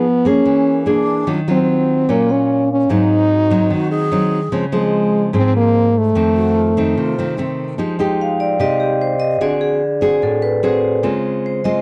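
A French horn and a nylon-string guitar open this melancholic, smooth bossa nova, cut from a longer piece. The horn sings the melody up front in a classical style with vibrato, while the fingerpicked guitar, with its fresh strings and warm acoustic tone, provides the accompaniment through lush chords such as Ebm9, Dbmaj7 and F7. Moments later a breathy, mellow alto flute adds a distant, unsteady second line with a soft attack and vibrato. A vibraphone played with medium hard mallets and its motor off makes a brief appearance at 2.3 s, then returns at 6.8 s, shortly before the horn falls silent at 7.4 s. From 7.8 s the vibraphone takes a bright, metallic, ringing solo over the guitar through a darker passage built on Fm9 and D7#11, all captured in a dry, close 1970s-style studio sound with light reverb.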